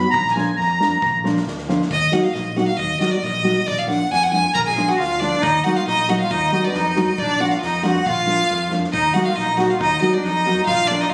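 A swung 2/4 pulse drives this bittersweet, fiery Balkan wedding-band fragment, with thumb-plucked nylon-string guitar and an overdriven, amped fingered bass alternating between Bb and Ebm while a drum kit played with bundle sticks sits in the background. A reedy, sweet accordion with light tremolo tuning opens the cut, drops out at 1.2 seconds and returns at 4.5 seconds as a second line beneath a clear, smooth bowed violin that takes the melody from 1.9 seconds, up front with light vibrato and plate reverb. The small room and phone capture give the compressed sound a close, lively intimacy.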